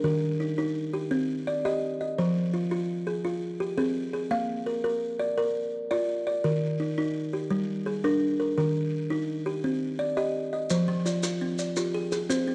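A woody, dark-toned buzzing kalimba opens this hypnotic, trance-like excerpt of southern African traditional music, spinning up-front arpeggios in an interlocking cycle in a straight 12/8 over a chord loop that moves from Eb through Cm and Fm. Grainy, mellow, vintage-sounding maracas join at 10.7 seconds, and a second buzzing kalimba, brighter and airier and a little lower in the mix, adds its own thumbnail-plucked arpeggios from 10.9 seconds. A moderate recital-hall reverb surrounds the dark, warm production.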